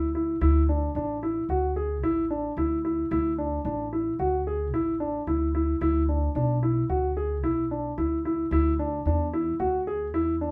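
Polished grand piano arpeggios and a dark, woody pizzicato upright bass open together in this restless yet hopeful contemporary instrumental passage, moving in 5/4 at 111 BPM in D lydian. The piano sits up front with a present, short-sustained tone, while the bass's steel strings give it an acoustic tone beneath. Harmony shifts from D5 to Dsus2 by 8.5 seconds within a moderate studio reverb heard from further back in the room, and the passage is cut from a longer piece.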